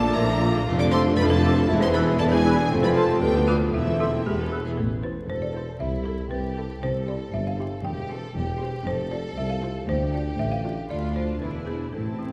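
From the first beat, a woody, hard-mallet folk marimba and a close, expressive violin section share the melody of this mischievous, magical cinematic piece in A minor at 118 BPM in 2/4, over a second violin line, background violas, smooth cellos, a lush double bass section and a mellow tuba, while pure flutes, a dark clarinet, a soft-attack oboe, a bassoon and a very quiet French horn section color the opening before dropping out by 4.6 seconds, all heard from further back in a reverberant scoring-stage space with vinyl crackle.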